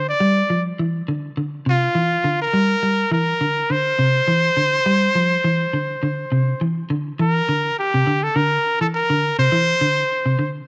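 A punchy, bright trumpet leads up front with a light vibrato and a pop-style solo line, riding over a dark, clean electric guitar that plays picked arpeggios on a Csus2 chord in C mixolydian. This joyful, funky afrobeat fragment moves at 103 BPM in 4/4 with a gentle swing on the sixteenths, and shifts into a new section at 7.2 seconds. Both parts carry a cassette tape character and sit in a moderate spring reverb, giving the home cassette recording a loose, lived-in feel.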